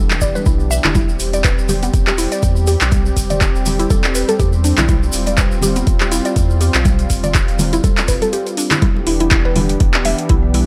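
A deep, tape-warmed electronic kick anchors this spiritual afro house excerpt at 122 BPM with a 56% sixteenth-note swing, joined by an afro-pop kit of handclaps and metallic hi-hats, thick-skinned congas in the background and a grainy tube shaker that drops out at 8.8 s as the drop arrives, while a round sine sub bass with transformer saturation, woody FM mallet-like plucks playing arpeggios through chorus, phaser and tape echo, and a smooth, detuned sawtooth analog pad holding sustained chords with chorus each pump under sidechain over Em7 and Fsus2/E, in a dry, gritty hardware recording.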